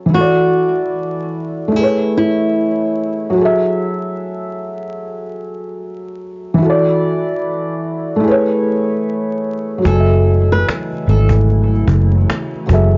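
Hazy and nostalgic, this lo-fi hip hop excerpt in F# minor sways at 74 BPM with a swung feel, as a soft, felt-muted upright piano carries cassette-tinged chords throughout, a fingerpicked flamenco guitar with finger squeak and analog delay offers brief melodic phrases, and from 9.9 seconds a dark, round muted electric bass with tube saturation sits up front beside a woody cajon with faint snares, while a warbling, detuned tape-like pad with chorus and reverb joins at 10.3 seconds, set in a dry, gritty small-room recording laced with vinyl crackle.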